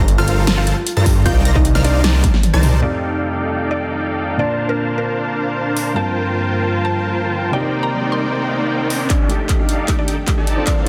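A lush, dreamy future bass drop at 153 BPM in a half-time feel opens on a thick, detuned saw bass with chorus and sidechain pumping, joined by a big-room dance drum kit with a huge snare, metallic hi-hats, handclaps and toms, a punchy electronic kick up front, bright unison pluck arpeggios, a dense compressed supersaw riff with vibrato and tape echo, and a woody, round mallet-like synth pluck melody in the background. At 2.8 seconds the bass and arpeggios stop, and a dark, vintage-toned baby grand piano and a rich, bowed studio string section take over the chords (F13, Bbmaj9, Gm11, Cm9), with a filter sweep on the strings while the supersaw and mallet pluck carry on. A very quiet riser enters at 7.3 seconds and leads into a build-up with a drum fill, all set in light digital reverb under a dense, heavily limited modern master.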